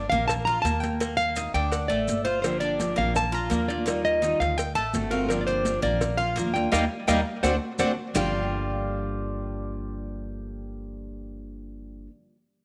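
A danceable, straight 4/4 groove at 168 BPM drives this excerpt from a longer Cuban son and guajira piece in G minor, with bright high-tuned congas, round low-tuned cowbell and bongos, and grainy maracas sitting in the background until 8.2 seconds, beneath a growly, woody pizzicato upright bass. Up front, a classical nylon-string guitar carries the fingerpicked melody while a metallic Cuban tres picks arpeggios on double strings through tape echo, and from 2.4 seconds a full-bodied jumbo steel-string guitar adds fingerpicked accompaniment. The band hits an accent just before the shift into a new section at 8.2 seconds, all set in a moderate echo-chamber reverb with small-room ambience.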